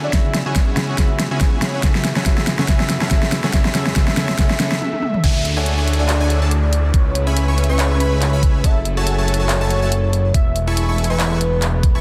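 An up-front, knocking electronic kick anchors this lush, bright future bass excerpt, joined by an overdriven dubstep kit with a huge snare, handclaps, hi-hat, toms and crash, while a velvety synth lead carries the melody over a thick, airy supersaw riff and sustained strings in the background, all pumping to the sidechain in a swung, half-time 4/4. A clean, fingered electric guitar accompanies the build-up until 4.8 s, with a very quiet riser and downlifter, before a brief break and drum fill lead into the drop at 5.2 s. There a fat, saturated analog bass and a punchy, phased pluck playing arpeggios enter, all under light reverb and a dense, heavily limited modern master.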